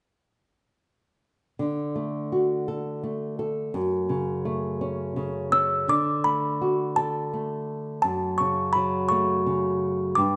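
A dark, thumb-plucked flamenco guitar opens at 1.6 seconds, gently accompanying this tender, innocent lullaby in D major, swaying in a rubato 6/8 at 56 BPM over chords that alternate between D and F#m, with an audible finger squeak. At 5.5 seconds a delicate, tinkling music box enters up front with the melody, its mellow, slightly out-of-tune voice sounding like a large box. Moderate recital hall reverb surrounds this short excerpt cut from a longer piece.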